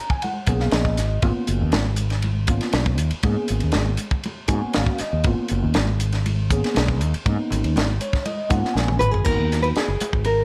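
A studio reverb surrounds this short, intense electric jazz fusion cut from a longer piece, driving along at 120 BPM in a straight 4/4 over G# minor chords. A tight funk kit with a high-tuned snare and a round, dark fretless bass sit up front, ringing congas stay in the background, and a mellow tine electric piano with ensemble chorus adds fills, while the drums fill from 8.8 seconds. At 9.0 seconds a fingerpicked nylon-string guitar enters with a deep classical tone to carry the melody, shortly before the harmony moves to G#m9.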